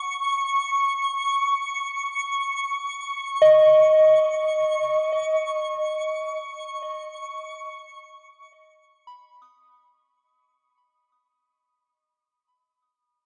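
Weightless and gently warm, this ambient fragment in B major drifts in free time, cut from a longer piece. A soft FM synth bell plays arpeggios in the upper register, its pure, mellow tones striking quickly and then decaying, colored by chorus and delay, and sits up front until 11.0 seconds. Alongside it, a twinkling granular texture holds a sparkling C#6 with an octave-up shimmer, blooming slowly and sustaining with a long release through its own reverb and shimmer reverb. The harmony moves from F# to Badd9 at 1.1 seconds. Both parts fade in together while an overall fade-out begins at 4.2 seconds. The whole sound is bathed in a huge, wet reverb and a worn cassette-tape character with warbly pitch drift.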